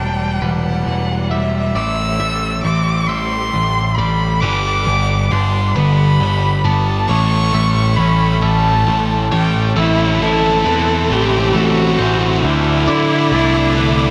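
Post-rock in a slow 6/8 at 45 BPM, melancholic and brooding, with a dark, expressive solo violin singing the melody up front through analog delay over rich background symphonic strings, twangy clean electric guitar and bright twelve-string guitar arpeggios under subtle chorus and delay, a thick fuzz guitar riff joined by a second fuzz guitar at 4.4 s, and a growling overdriven picked bass, all building through Em7, Am7, Gmaj7 and A7 before shifting at 9.8 s to Amadd9 and Dsus2 in a dreamy mix soaked in lush hall reverb.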